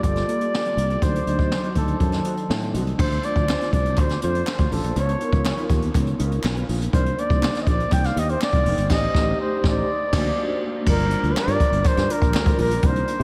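An up-front flugelhorn carries the melody in this slick, nocturnal slice of polished 1980s jazz-funk pop, its warm, jazz-styled tone shaded with light vibrato, scooped notes and a touch of delay. Set at 122 BPM in 4/4 with a straight feel in G minor, the excerpt moves through chords such as Gm9, D7b9, C#9 and Am7b5 before settling on Gm7. Beneath the horn, a fretless electric bass sounds bright, growly and punchy, while a brushed drum kit brings dark cymbals, a high-tuned snare and a boomy kick with a rolled-off top. A mellow tine electric piano with ensemble chorus sits in the background, and a very quiet, clean, fingered electric guitar riff joins at 0.2 seconds. Hollow group handclaps enter faintly at 3.5 seconds, the band hits an accent from 8.9 seconds, and a cathedral reverb soaks the mix in a dreamy haze.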